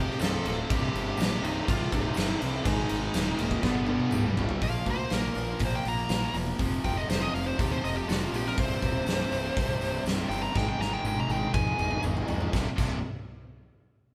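Classic rock at 121 BPM in C minor, brooding and swaggering, as a smooth, dark overdriven lead guitar takes a solo from 4.6 seconds over biting and cranked stack guitar riffs, a bright double-tracked distorted guitar that drops out at 4.6 seconds, round fuzz picked bass, a punchy, up-front arena drum kit with fills, and a faint jingly tambourine, all played live in a stone room.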